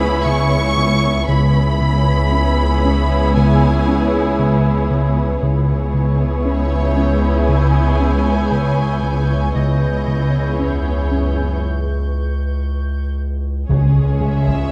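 A round analog bass riff sits at the front of this tense, uneasy cinematic suspense cue, over a saturated sub bass drone, a dark, chorused ambient pad, bowed cello and very quiet double bass sections, a rich viola accompaniment, and lush violin sections carrying the vibrato melody and a second line, with a faint high violin texture joining at 5.4 s and mellow French horns and very quiet taiko entering at 13.7 s, all placed in a wet scoring-stage reverb.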